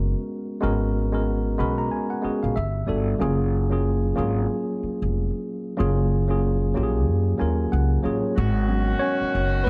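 Late-night and soulful, this short R&B excerpt at 93 BPM swings gently in G# dorian as a worn, slightly out-of-tune tine electric piano with light overdrive comps over G#m11, Gmaj9 and F#maj9 and slips in fills before taking a solo at 8.4 seconds, while a woody, thumpy pizzicato upright bass on gut strings sits up front and a bright saxophone section with light vibrato adds smooth stabs in the closing moments, all in a dark, small-room production.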